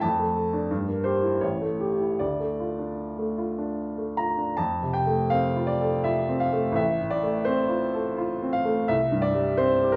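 A warm upright piano carries this romantic character piece alone, its woody, vintage tone smooth and lingering with long sustain as it sits up front in the mix. The playing moves in 3/4 with a flexible rubato feel, drifting between roughly 73 and 90 BPM, and the mood is brooding and bittersweet. It opens in D minor, passing through Dm/F, Edim/G and A7 before settling on Dm. At 4.6 seconds the music turns toward F major, moving from F to F/A and arriving on C5 at 8.9 seconds. The piano spans from A1 to Bb5, and the large studio reverb adds a lush wash, heard from further back in the room, as this fragment of a longer piece unfolds.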